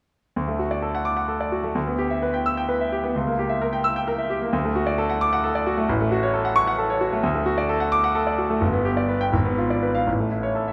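Set up front in a moderate recital hall reverb, a clear, polished concert grand piano with deep bass and short sustain plays solo from 0.4 to 10.7 seconds in this heroic, brilliant classical virtuoso study in D major, a passage cut from a longer piece that moves at 87 BPM in a rubato 6/8, spanning G1 to E6 as its harmony passes through diminished chords before settling on A.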